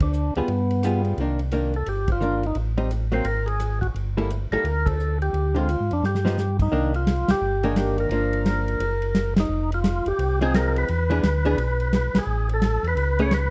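A dark, lightly reverberant production gives this late-night, smoky soul jazz organ trio fragment its hazy glow, swinging in four. A full, percussive tonewheel organ carries the melody with key click and second-harmonic percussion, while a round, mellow tonewheel organ holds down the bass line, both turning through a slow rotary speaker and sitting up front. Beside them, a hollow-body archtop guitar comps in clean, compressed picked chords from 0.4 seconds. A dry, rolled-off soul drum kit with a tight kick and medium-tuned snare punctuates the band accents and plays a short fill at 6.0 seconds, marking the turn into the second section.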